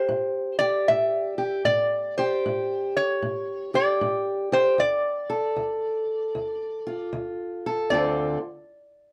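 A worn, warbling old-tape sound with light reverb frames this soulful, mournful acoustic country blues cut from a longer piece, swinging in 4/4 at 77 BPM in D minor, where a metallic, nasal resonator slide guitar played with fingerpicks carries the melody up front over a dark, woody, boxy parlour acoustic guitar with old strings fingerpicking the accompaniment, both playing until 8.4 seconds as the chords move from Am7 to Dm and then Dm7.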